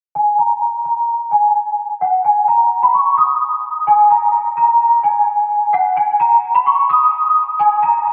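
A large celesta carries the melody from 0.2 to 8.1 seconds, its bell-like, delicate tone struck with hard felt hammers and sitting up front in the mix. This short hip hop fragment, cut from a longer piece, moves at 129 BPM in 4/4 with a half-time feel, and its mood is at once hard-hitting and melancholic. The celesta line stays high, between Gb5 and Eb6, and is colored by an ensemble chorus, a low-pass filter and a delay. A filter sweep runs across the celesta for the whole passage, shifting its ringing, mid-forward sound. A long, wet plate reverb soaks the mix, giving it a dreamy, suspended atmosphere.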